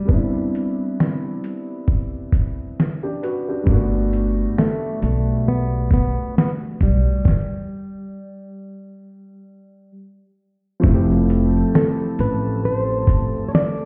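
Lo-fi hip hop with a dreamy, mellow swing, this excerpt pairs a fingerpicked flamenco guitar melody with soft, felt-muted upright piano chords, both filtered and up front, over a gritty, overdriven sampler-style drum kit with a thumpy kick, fat snare, hi-hat and shaker. A woody, growly pizzicato upright bass enters at 3.7 s, a stop at 7.3 s suspends the harmony, and a hollow, airy, flute-like pad with chorus drifts in behind at 11.1 s. The whole mix sounds muffled through a wall, with a light stone-room reverb.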